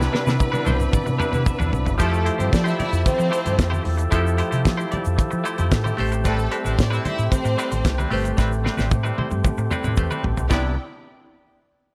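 A drum fill on a dry, up-front 70s kit with a fat snare and tight kick opens this celebratory, glamorous disco excerpt at 113 BPM, cut from a longer piece, and a stringy, nasal clav adds its own fill from 0.4 seconds while sitting in the background. A round, dark fingered electric bass anchors the harmony as it moves from Cmaj9 to Fmaj9 at 2.0 seconds and on to Am9 at 6.0 seconds. An overdriven tonewheel organ holds gritty, thick chords with key click and lush chorus, and a clear, bowed studio string section carries a smooth-topped second line. A bright, clean semi-hollow electric guitar with a harmonic tremolo fills in the accompaniment. Very quiet, low-tuned, soft-handed congas and a grainy tube shaker in the background add percussion, and the drums play another fill from 8.4 seconds before the music returns to Cmaj9, all set in a small room with light reverb.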